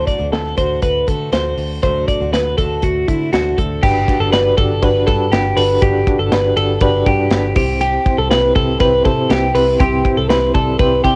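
Youthful and breezy, this excerpt of jangly indie pop in G major moves at 121 BPM in a straight 4/4, its chords shifting from D7 to Gmaj7 to C. A bright, twangy twelve-string electric guitar sits up front with clean, compressed arpeggios, backed by a round, foam-muted vintage bass and a dark, smooth drum kit with a tight kick and dark cymbals. A full-bodied steel-string acoustic guitar plays quietly until 4.3 s, and a reedy, mellow electric piano with fast tremolo enters at 3.8 s, both guitars and the keys carrying a cassette-tape color within a lightly reverberant home-recorded sound.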